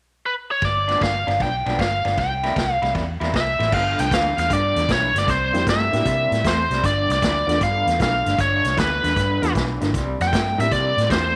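A bright, overdriven lead guitar sits up front from 0.3 seconds, carrying the melody over a swaggering, gritty electric blues shuffle in G mixolydian at 154 BPM, moving between G7 and C7 before shifting to G9 and C9 chords. Beneath it, a round, foam-muted fingered bass and a vintage kit with dark cymbals and a punchy kick drive the swung groove, while a slightly broken-up, lo-fi guitar through a small old amp plays a riff colored by tremolo. From 3.7 seconds, a detuned, jangly honky-tonk upright piano adds woody accompaniment in the background, all set in a light studio reverb in this cut from a longer piece.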